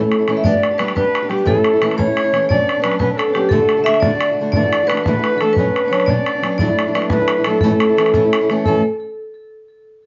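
Wet studio reverb and a rolled-off top end frame this bright, rollicking Celtic jig in A mixolydian, moving at 117 BPM in 6/8 and tuned slightly low to A4 = 436 Hz, cut from a longer piece. A ringing, metallic vibraphone with tape echo carries the melody over a reedy, airy wooden flute with vibrato on a second line. A fingerpicked steel-string guitar with audible finger squeak sits up front as accompaniment, and a boomy, vintage bodhran enters at 0.1 seconds. The chords move from G through A, Bmadd9 and D to Dadd9, then back through Bmadd9 and Dadd9 before landing on A at 7.6 seconds.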